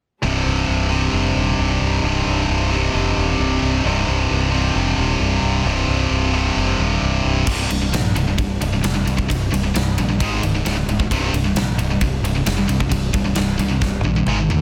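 Heavy metal in C minor at 132 BPM, relentless and heavy, built on two bright, picked distorted guitar riffs (one high-gain and up front) over a growling, overdriven fingered bass. For the first 7.4 seconds a very quiet, lush bowed string section sustains smooth, vibrato-rich chords behind the riffing. At 7.5 seconds a big, acoustic rock kit with a punchy kick and bright cymbals enters as the riffs move through power chords on C, Ab and Db, before a drum fill at 13.8 seconds, all under a dense, heavily limited modern master with light reverb.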